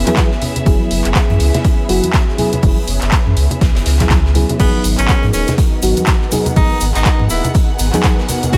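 Deep house at 122 BPM in G# minor with a swung, hypnotic groove, where an up-front overdriven electronic kick, a punchy analog drum machine's claps, hats and crash, dry conga hits and a background oversized low-tuned kit drive a round sine sub bass, mellow warbling FM electric piano stabs with delay, a silky phased string machine and a lush, dark bowed string section, all breathing with sidechain pumping, while a woody mallet-like pluck flickers briefly at the start and a bright jazz-style tenor saxophone solo with 12-bit grit and tape echo enters alongside a grainy tube shaker at 4.6 seconds as the harmony moves from F#9sus4 to G#m7.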